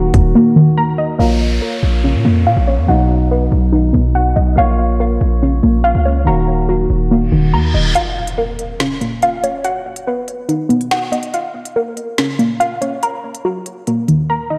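This dark, menacing drill excerpt in Bb phrygian runs at 142 BPM with a half-time feel. It opens on a warbling, dusty pluck playing arpeggios over soft, round electric-piano-like synth keys and a punchy, heavy 808-style bass, with a brief drum hit before a silent gap. From 1.2 s a filter sweep unfolds as the chords move between Bbm, B and Ebm, and a downlifter and reverse cymbal lead into an impact at 8.0 s. There the keys and 808 drop out and the drum kit comes in for a break, with a hard-clipped kick, woody snare, crisp hats and finger snaps sitting up front. The lo-fi, detuned pluck, thickened by a sub octave, chorus, low-pass filtering and tape echo, carries on to 14.6 s, while the mellow keys also carry chorus and a low-pass filter. The whole mix is dreamy and soaked in a lush hall reverb.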